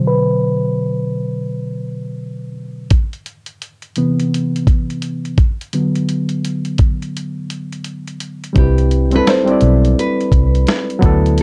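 Dark, gently reverberant production frames this nostalgic, dreamy lo-fi hip hop excerpt at 85 BPM with a swung 16th feel: a barky, lightly overdriven reed electric piano carries the filter-swept opening over D6 and Cmaj7 chords, a gritty, compressed sampler-style drum kit with a thumpy kick joins at 2.9 seconds, and after a break from 7.1 seconds a round, foam-muted electric bass and a fingerpicked nylon-string guitar with audible finger squeak enter at 8.6 seconds on a Cmaj9 chord.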